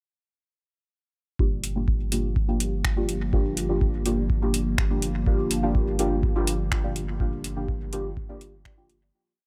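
A dry, close-sounding mix opens this short, whole piece of dub techno in G minor at 124 BPM, cavernous and meditative, settling on a Gm7 groove from 1.4 seconds and fading out from 6.6 seconds. An electronic kick drives four-on-the-floor under a booming analog drum machine whose metallic closed hats and finger snaps sit up front with dub echo, while a round, sine-like analog bass holds a sustained G1 root and pumps against the kick. Up front, a deep, mellow chord stab with detuned sawtooth colour and a filter pluck moves one dark shape in dotted rhythms through chorus, phaser and dub echo, and from 2.0 seconds a warbling, nostalgic lo-fi pad hangs in the background with slow attack and its own reverb.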